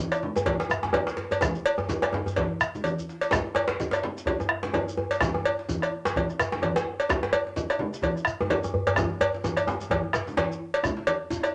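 A swung sixteenth-note groove at 127 BPM in 4/4 gradually speeds up through this powerful, festive West African drum ensemble excerpt, with a metallic, dry cowbell and a deep, dark bombo up front, a tight, cracking djembe played with soft hands, ringing low-tuned congas that sound compressed and saturated, a grainy, mellow shekere close by, and another, distant djembe struck with hard hands in the background, set in a wet small room, with drum fills at 2.8 and 9.0 seconds.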